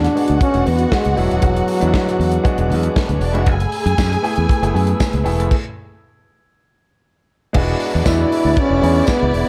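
A straight 4/4 disco groove at 118 BPM in F# minor, driving and glamorous, rides on a punchy, up-front acoustic kit of kick, snare, hi-hat and crash and a direct fingered electric bass, while a mellow, jazz-style trombone carries the melody in two phrases, a lush bowed violin section plays a second line, a clear grand piano accompanies, a smooth tonewheel organ with chorus vibrato and key click sustains chords in the background, and a jingly vintage tambourine joins at 4.0 seconds, the whole mix set in light studio reverb, with a stop from 5.5 to 7.5 seconds in this cut from a longer piece.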